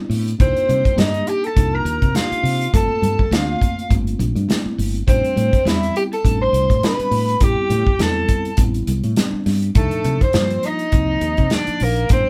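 Played live in one room with moderate studio reverb, this slick, driving electric jazz fusion excerpt at 102 BPM, with swung sixteenths, sets a mellow, vibrato-laden tenor saxophone up front over a worn, slightly out-of-tune tine electric piano, a round, punchy fretless bass, a studio drum kit with a tight kick, very quiet vintage congas and a dark, overdriven, double-tracked electric guitar carrying a second line, all moving through Cm11, Gm11 and Am11 chords.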